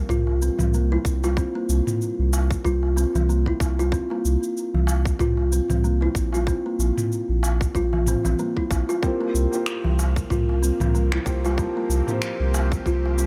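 A woody, ringing kalimba plays arpeggios through a digital delay in this meditative organic downtempo excerpt at 94 BPM in 4/4 with a light 16th-note swing. Beneath it sit a round sub bass with sidechain pumping and a tight, overdriven electronic kick up front, while the chords shift between C7sus4 and Bbsus2. An overdriven electronic kit of cabasa, finger snaps and toms, a distant clay-shell darbuka and a very quiet, dark bronze singing bowl surround them, and a felt-muted upright piano with audible action noise enters at 9.0 seconds, followed by a detuned, string-like drone in the background at 10.7 seconds.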